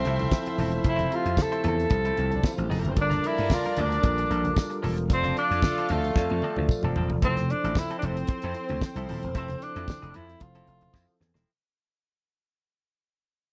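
Disco at 113 BPM in F major, glamorous and joyful, where a breathy, intimate tenor saxophone with slapback echo carries the melody up front over a punchy, growly slap bass and a damped 70s drum kit with a fat snare and tight kick, while a dark, floating string section, a mellow tine electric piano and a clean semi-hollow guitar with analog chorus sit in the background, low-tuned congas and a jingly tambourine add percussion, and a clear, roomy horn section adds stabs until 6.9 s, all in a dry, close 1970s-style studio sound that fades out from 7.2 s after a drum fill.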